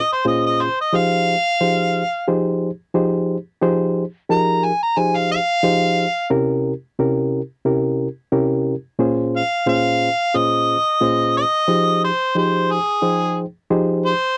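An up-front harmonica carries the melody in this soulful, smoky blues excerpt, its overdriven solo voice punchy and vintage, with light vibrato and scooped notes in a pop-leaning style. Beneath it, a reedy, bright electric piano plays the accompaniment through its built-in speakers, lightly overdriven and just as forward in the mix. The tune moves at 89 BPM in 4/4 with a gentle sixteenth-note swing, sits in F minor, and is tuned to A4 = 437 Hz. The harmony starts on Bbm9, settles on Fm9, tightens on C7b9 at 6.3 seconds, then returns through Bbm9 to Fm9 by 11.7 seconds. The sound is that of a dry, close 1970s-style studio recording with a touch of reverb, and the passage runs about 14.4 seconds.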